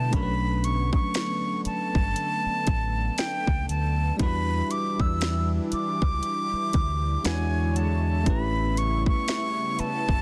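Contemporary R&B with a moody, late-night feel, this excerpt moves at a slow, swung pace over Bm9, Em9, E13 and A13 chords. A breathy concert flute carries the melody up front, close-miked with a straight tone and soft attack. A bell-like tine electric piano adds clean, bright accompaniment beneath a lush, thick pad of detuned sawtooth voices, warbling with vintage chorus and long, slow-blooming sustains. A deep, round dub bass played with the fingers anchors the low end alongside a trap drum kit that enters at 0.1 seconds, with a hard-clipped kick, a sharp overdriven snare and bright hats all pushed forward. A very quiet, crystalline wavetable pluck with ring modulation and a moving notch filter glints in the background. The dry, dense and heavily limited master keeps every part close and immediate.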